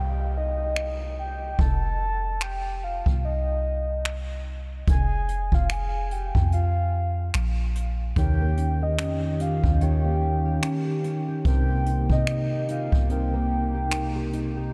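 Longing and sensual, this contemporary R&B excerpt on swung sixteenths opens with a background downlifter as a dark, octave-layered synth lead carries the melody through chorus, phaser and diffuse delay over a round, deep 808-style bass, with a jazz brush kit of finger snaps, hi-hat and boomy kick entering at 0.8 s. From 8.2 s a mellow tine electric piano and a thumb-plucked nylon-string guitar playing arpeggios in the background come in, joined at 8.9 s by a hollow, flute-like pad that pumps, all set in light small-room ambience.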